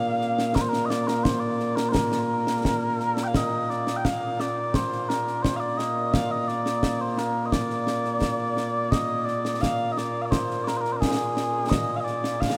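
Scottish traditional pipe music in 2/4 with a proud, ceremonial air: this short cut from a longer piece opens with mellow, sweet small bagpipes carrying a continuous, vibrato-tinged solo melody up front, joined at 0.2 seconds by close, dry concert snare and bass drum with dark cymbals, while a huge, lingering ambience sets the listener further back in the room and the tune moves into a new section at 3.3 seconds.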